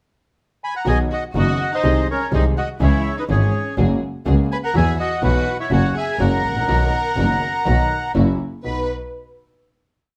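Moderate studio reverb surrounds this short, complete tango, whose rubato feel carries a passionate, nostalgic mood. A reedy, dark bandoneon sings the motif-based melody up front from 0.6 s, partly doubled in thirds, while a bowed double bass with a biting, nasal edge, a clear grand piano with deep bass, and a veiled, very quiet con sordino string section each mark the tango rhythm in four. A violin section adds a smooth, octave-doubled second line with vibrato, and the piece closes on a final chord at 8.6 s.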